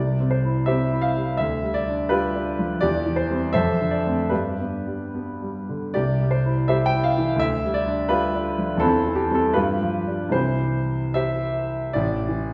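The recording places the listener further back in a recital hall, where a generous reverb hangs around each note and the top end is softened. A clear concert grand plays alone in a romantic character piece, cut from a longer work, moving in two with a flexible rubato that lets phrases breathe. Its sound is open and up front within that room, with a deep bass reaching down to A1 and a melody rising as high as G5. The harmony circles gently between tonic and dominant, settling home on C at 10.3 seconds before a final A5 chord sounds at 12.0 seconds. The mood is hopeful and warm, and the piano's part ends at 12.5 seconds.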